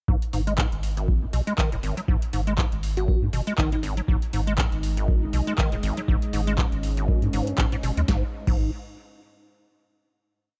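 A swung acid house groove at 120 BPM in 4/4 drives this short, hypnotic and gritty piece in G# minor, built on a deep, tape-warm four-on-the-floor kick and a booming analog drum machine with a crisp snare, handclaps, metallic hats and a crash, with short room sound on snare, clap and hats. A squelchy, resonant square-wave acid bass runs a 16-step line with accents and slides, pushed through overdrive, ensemble chorus and tape echo, while a round, nasal analog bass plays a syncopated riff underneath with sidechain pumping. At 3.0 seconds a bell-like, sparkling FM electric piano drops in short answering phrases, dressed in chorus and tape echo. From 4.4 seconds a dark, detuned sawtooth pad with a sub octave and slow attack spreads moody sustained chords, also chorused and pumping against the kick. The groove gives way at 8.1 seconds to a final chord, and the whole track carries a dry, gritty hardware character with digital ambience.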